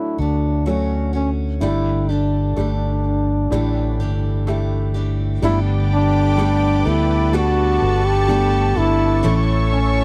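A dry, close 1970s-style studio sound with light reverb frames this tender, heartfelt pop ballad fragment at 63 BPM, where a clear, up-front trombone sings the melody with vibrato and scooped notes over a soft, felt-muted upright piano whose action noise is audible, bright picked steel-string acoustic guitar arpeggios, and a round, punchy fingered electric bass. The harmony moves from Dmaj7 through Gsus2 to A7sus4. At 5.4 seconds, as the chords shift to Gadd9, an intimate violin section bowing sul tasto adds a second line and a lush, detuned sawtooth pad with chorus spreads sustained chords above it.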